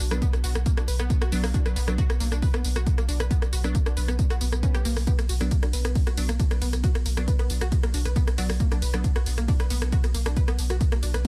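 A dry, echo-heavy mix carries this dark, hypnotic excerpt of driving peak-time techno at 136 BPM in B harmonic minor, where a punchy, tape-warm kick and a thick, saturated sine sub bass sit up front beneath an overdriven, layered kit of hi-hat, ride cymbal, rim click and tambourine with sidechain pumping and analog delay, while a lush, detuned sawtooth unison pluck riff and crisp digital chord stabs in the background pump and trail tape echo, and a very quiet electronic swell passes at 4.6 s.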